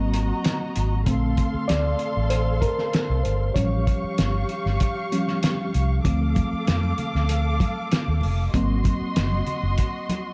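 This excerpt of lush, cinematic 1970s-style soul opens at 96 BPM in 4/4 with a worn, slightly out-of-tune reed electric piano taking the lead, its fast tremolo sounding through built-in speakers. Round, foam-muted fingered bass sits up front beside a cloth-damped, thuddy drum kit with a fat snare, tight kick and gritty, rolled-off top, while a veiled, con sordino string section hovers at a distance over chords moving from Ab9 through Bbmaj9, A7b13 and Dm7. Very quiet, bright congas enter at 6.1 seconds, and light small-room reverb gives the dark production a silky finish.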